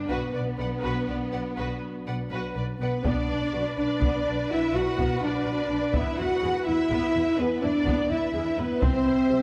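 Cinematic, epic orchestral film score in B phrygian, dark and epic, moving at 83 BPM in a straight 12/8 through Bm, E5 and C within this short excerpt cut from a longer piece. A mellow French horn section holds sustained chords from the opening over a bowed string body: lush vibrato violins carry a smooth melody while a more distant second violin line, expressive violas, soft-attack cellos and a woody double bass section fill out the harmony and low end. At 3.0 seconds a close, dry taiko ensemble struck with hard sticks enters, its hits set against the strings and horns bathed in a scoring-stage reverb.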